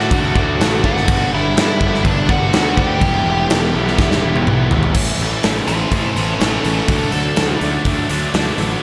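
This bittersweet, restless alternative rock excerpt opens at 124 BPM in a straight 4/4, with a big rock drum kit up front: punchy kick, a medium-tuned snare, toms, hi-hat and bright crash cymbals ringing in a big room. A nasal lead guitar with a parked wah carries the melody from the start, overdriven and touched with slapback echo, while a fuzz-soaked, growly picked bass sits beneath in the low register. Behind them, three overdriven guitars stack the riff: one biting, one raw and garage-like with its own slapback echo, and a very quiet, double-tracked and compressed part that drops out near the end of the drum fill, just before 5.0 seconds. The harmony moves from D through G and E minor, then shifts to A and back to D as the lead guitar solo begins at 5.0 seconds. At that same point a very quiet, clean twelve-string electric guitar adds compressed arpeggios. A moderate hall reverb and small-room ambience give the whole a big arena sound.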